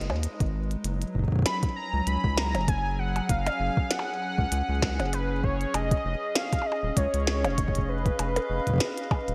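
IDM at 98 BPM with a light 16th-note swing, this cerebral, intricate excerpt sets a velvety, detuned sawtooth lead with chorus, vibrato, cassette tape and digital delay over a hollow, flute-like pad with chorus, sampler grit and sidechain pumping, a round, wave-folded analog bass, a glitchy kit of clicky hats, tiny snare and percussion blips with overdrive and gated reverb, and an overdriven soft electronic kick entering at 0.4 s, all moving through G#m, F#sus2 and C#7 in a bright 1980s-style digital mix with light ambience.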